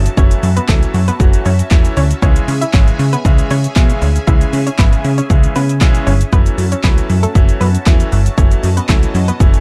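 Dance-pop at 117 BPM in a straight 4/4, this energetic, bittersweet excerpt moves from F#m7 to C#m and back to F#m7 over a dark, warm digital ambience. A punchy, overdriven pop drum kit sits up front with a fat snare, metallic hats, handclaps and shaker, beside a funky, plucky analog bass whose fast-attack sawtooth and pulse tones pump against the kick. A bright grand piano with audible action noise and short sustain plays the accompaniment, while a hollow, nasal square-wave pluck carries the bouncy melody through chorus and digital delay. In the background, a mellow, detuned supersaw swell holds sustained chords through a phaser, and a very quiet, close and dry group handclap adds a human touch from 0.7 seconds. A barely audible downlifter passes in the opening 2.2 seconds.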